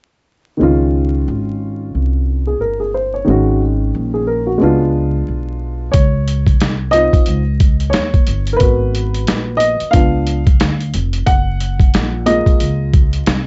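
A dark, mellow upright piano with audible action noise carries this smooth jazz-hop excerpt at 90 BPM in Db major, accompanying woody pizzicato upright bass from 0.6 s before soloing from 5.9 s, when a compressed, gritty boom bap drum kit with a thumpy kick and 12-bit sampler character joins, the mix dark and warm with light reverb and vinyl crackle.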